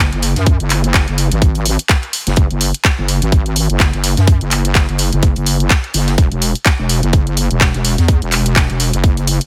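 Gritty and swaggering, this bass house excerpt struts at 126 BPM with a 16th-note swing, built on a heavy, saturated wobble bass with chorus, overdrive and sidechain pumping running from E1 to F#2, a tight, up-front electronic kick from 0.5 seconds, layered garage handclaps and hi-hat, and a very quiet, dry reggae kit with a high-tuned snare and hi-hat, all set in a studio reverb.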